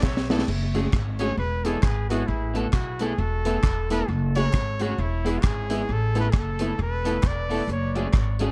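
Swung eighths drive this energetic ska clip cut from a longer piece, which opens with a half-second fill on a dry, dark reggae drum kit with a high-tuned snare and tight kick, while a woody, thumpy pizzicato upright bass holds the low end, a twangy, slightly broken-up electric guitar comps, a detuned, jangly honky-tonk piano adds stabs in the background, and a hollow, distant group handclap sits far back, until a punchy, close-miked trumpet with light vibrato takes a solo from 0.5 seconds, with trumpet, drums and handclaps all trailing dub echo in a warm mix with little reverb.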